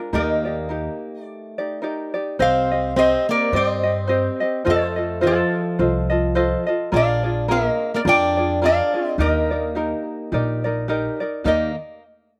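A mellow, fingerpicked tenor ukulele opens this sunny, languid Hawaiian swing excerpt at 106 BPM in Eb major, joined at 0.1 s by an up-front, nasal, metallic lap resonator guitar playing the slide melody with fingerpicks, a boxy, picked plugged-in acoustic guitar adding a second line with slapback echo, and a woody, thumpy gut-string upright bass plucking the low end. A brief break arrives at 1.3 s before the chords move from Ebmaj7 through Cm, F7 and Bb7 back home in a dry outdoor sound.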